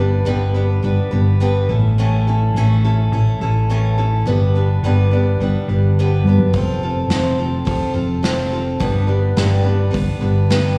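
Heard live through a venue's PA with recital-hall reverb and a light small-room ambience, this hopeful, open-road folk and heartland rock fragment pairs a bright, up-front picked acoustic archtop guitar, touched with slapback echo and audible finger squeak, with a dark, round hollow-body short-scale electric bass over a G, A, G, F, G progression, until an airy unplugged drum kit with bundle sticks, a punchy kick and a medium-tuned snare enters at 6.5 seconds.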